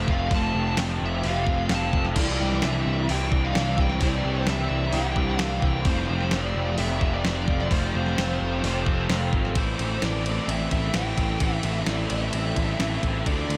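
Dreamy and wistful, this reverb-soaked shoegaze and dream pop passage layers a fuzzy lead guitar melody with diffuse ambient delay over a lo-fi, slightly broken-up electric guitar playing chorused arpeggios through a small old amp, an overdriven cranked stack guitar riff with ensemble chorus, a raw garage guitar riff in the background trailing reverse reverb, a bright, up-front picked electric bass, and a clean 12-bit drum machine with a thumpy kick and fat snare, moving through Fadd9 and Cadd9 before shifting to Am at 9.6 seconds.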